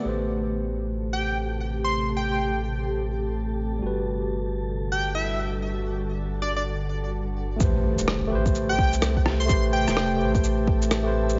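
Ghostly and wistful, this future garage piece moves at 127 BPM in A dorian, with a swung sixteenth-note feel and chords shifting from Am9 to Gmaj7 and back. From the start, a bright tine electric piano through a combo amp plays accompaniment with tape echo and a low-pass filter, while an ethereal, detuned pad holds chords with chorus, phaser and its own reverb. A round, soft dub sub bass sits up front, and the bass, piano and pad all pump against a sidechain. A breathy, wind-like tuned noise texture drifts in the background from 0.6 seconds, and at 1.1 seconds a punchy, catchy unison lead carries the melody through digital delay. At 7.6 seconds an overdriven deep kick, a muffled, pitched-down shaker and rim click, and a very quiet electronic impact arrive together. The whole mix sits in a moderate concert-hall reverb with a dark, rolled-off top, and the passage is cut from a longer piece.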